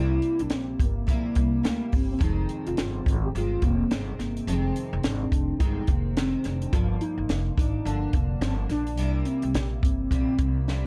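A dark, lightly reverberant production frames this hazy, lonely indie and bedroom pop excerpt at 106 BPM in F dorian, where a warbling, detuned, nostalgic lead with lush chorus and slapback echo carries the melody over a full-bodied picked dreadnought acoustic guitar with analog chorus and vibrato, a woody, growly pizzicato upright bass up front, and a dry cocktail drum kit with punchy kick and high-tuned snare that enters at 0.2 seconds and plays a fill at 10.7 seconds.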